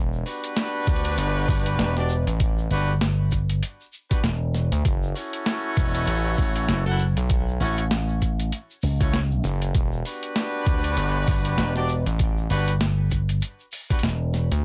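A dry, lo-fi hardware sound with cassette tape grit frames this swaggering, playful glitch hop excerpt at 98 BPM in E dorian, swung on the sixteenths and moving from Em7 to F#m7 and back. An aggressive, saturated synth bass built from square and sawtooth waves with oscillator sync and a moving notch opens at 0.0 s. It is soon joined by a grainy tube shaker, an overdriven sampler-style kit of hi-hat and medium-tuned snare, and a vibrato-laden horn section whose brilliant stabs carry tape echo and sidechain pumping. From 0.9 s a punchy, amped slap bass through an envelope filter sits up front, arriving together with a thumpy, compressed electronic kick.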